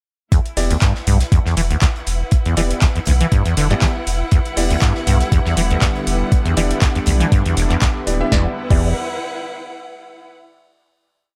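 A gritty, raw acid house piece opens with a squelchy, resonant sawtooth acid riff, treated with tube saturation, chorus and dub echo, over a thumpy four-on-the-floor electronic kick, an overdriven analog drum machine with crisp snare, claps and metallic hats, a very quiet gated 80s kit playing a looped breakbeat, and a bowed string section with vibrato and sidechain pumping. From 0.6 s a round sine sub bass plays off-beat notes while a vintage concert grand adds sparse, echoing chord stabs, and at 4.3 s a thick, detuned unison pad with chorus joins. The swung groove sits in a small, lightly reverberant room, and the strings carry on into the final chord until 10.3 s.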